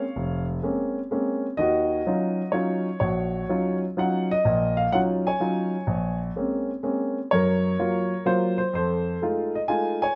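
Jazz waltz excerpt with a cool, moody swing, featuring a warm grand piano alone, present and up front with long sustain, ranging from deep bass to upper register through rich minor ninth chords and ending on an altered dominant, set in a moderate club reverb.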